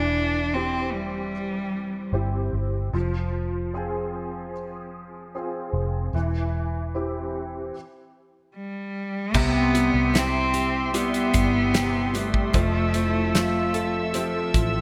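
A bright, 1980s-style digital production sits in a lush hall reverb, framing this tender, heartfelt pop ballad at 75 BPM in C major, cut from a longer piece. An up-front bowed cello briefly states the melody with vibrato and a smooth, focused top, over a clear, intimate concert grand piano whose action noise and long sustain come through beneath an ensemble chorus, while a dark, round, foam-muted fingered electric bass anchors the low end. During a stop from 7.7 s, the cello returns at 8.6 s, and the arrangement fills out at 9.3 s. There, a warbling, detuned analog pad with a slow attack adds sustained chords, a fingerpicked nylon-string guitar plays delayed arpeggios in the background with audible finger squeak, and an acoustic country drum kit brings a punchy kick and medium-tuned snare. From 12.9 s, a distant, roomy French horn section adds a second line, carrying its own delay, over the Fmaj7 that arrived at 12.5 s after Cmaj7.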